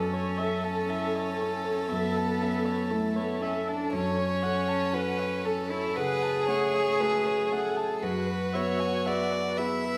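A rubato 4/4 pulse at 59 BPM carries this fragile, melancholic neoclassical piece for piano and strings in F# minor, cut from a longer work and tuned to A4 = 438 Hz. A close, airy-bowed solo violin sings the melody played sul tasto with light vibrato, while a soft-attacked cello traces a second line, and a nasal, woody viola and a mellow, boxy concert grand with deep bass and long sustain supply accompaniment throughout the 10 seconds. The harmony moves from A/F# to F#m at 3.9 s and E/F# at 8.0 s, all set in a moderate recital hall reverb of a church or concert hall.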